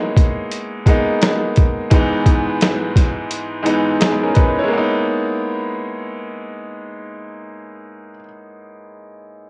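Boom-bap hip-hop in G# minor at 86 BPM, this dark, gritty fragment of a longer piece sways with a swung 16th-note feel. A bright grand piano carries the accompaniment throughout, opening on a G#madd9 chord with an intimate, up-front sound, long sustain and audible action noise, its tone shaped by cassette tape and filtering. A sampler-style drum kit of kick, snare and hi-hat enters at 0.2 seconds and drops out at 4.6 seconds, sitting up front and louder than the piano. The drums are compressed and pitched down, with a thumpy kick, a medium-tuned snare, 12-bit sampler grit and the air of a large room. From 4.7 seconds the piano carries on alone into a second section, and light reverb and a home-cassette character give the whole a worn, lo-fi intimacy.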